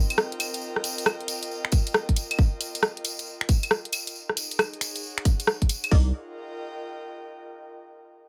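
Lightly reverberant and cut from a longer piece, this skippy, soulful two-step UK garage groove in C minor at 136 BPM swings over an airy, breathy chorused pad that fades out while it pumps from sidechaining, as an up-front electronic kit of claves, finger snaps, warm hats and rim clicks and a distant, jingly tambourine start at 0.1 seconds, a second tape-warm kit adds a kick and more hi-hat from 1.7 seconds, and the chords move from Cm7 to Ebm7 before a bright, wave-folded chord stab with tape echo and a deep, tube-saturated sine sub bass hit together at 5.9 seconds.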